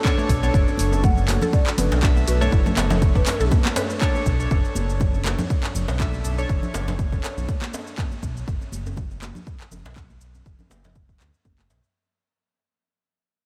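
Over a swung 121 BPM afro house groove in B minor, a punchy, overdriven kick sits up front with a house kit of bright hats, handclaps and cabasa, while hard-handed congas and a deep, very quiet djembe fill the background beneath a smooth, gliding synth bass that pumps against the kick. In the opening 4.0 seconds, a drop carries a sidechained analog pad holding a Bm7 chord, a woody mallet-like pluck playing arpeggios, and a hollow bamboo bansuri melody with vibrato from 1.0 to 3.5 seconds, while detuned, ring-modulated analog key stabs with chorus and delay continue until 8.0 seconds. From 4.0 seconds a hypnotic, driving fade-out begins. The keys drop away at 8.0 seconds, and the drums, percussion and bass carry the fade through to 11.9 seconds, all under a light reverb.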